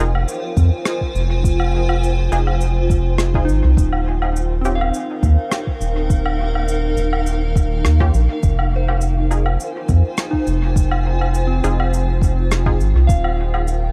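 Set in a small room, this spacious, hazy stretch of ambient dub, cut from a longer piece, rests on a deep, round analog bass sitting up front and a soft electronic kick drum, with woodblock, cabasa and rim click adding brushed acoustic texture through dub echo. A cloudy, evolving granular pad holds sustained chords in its own reverb, while a pure, warbling FM bell plays arpeggios and a muted, detuned chord stab adds filtered plucks, both drifting in the background with chorus and dub echo. The harmony sways between Fm7 and Ebadd9, and the stabs drop out at 12.8 seconds.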